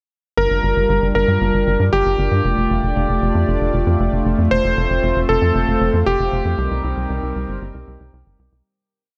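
A straight 116 BPM 4/4 pulse drives this short, moody, nostalgic synthwave piece in G minor, with a punchy, tight sequencer bass playing sixteenth notes from 0.4 seconds. Above it, a shimmering, detuned pulse-width pad with chorus sustains the chords Gm7, Dm/F, F and Cm7, while an electric grand piano with a vintage, clangy character and tape echo repeats a riff melody up front. The dark, warm production sits in light reverb, and the whole piece fades out from 5.9 seconds.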